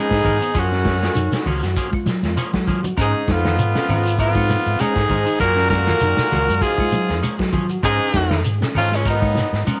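A swung sixteenth-note groove from a punchy vintage drum kit, round fingered electric bass, soft high-tuned congas, grainy shekere and faint woody claves drives this intense afrobeat fragment, with a raspy, gritty tenor saxophone carrying the melody up front through tape echo while a brilliant trumpet with scooped notes and a clear trombone section play second lines behind it, a mellow tine electric piano arpeggiates and a clean semi-hollow guitar adds bright stabs, all captured dry on a home cassette recording that includes a drum fill at 2.2 seconds.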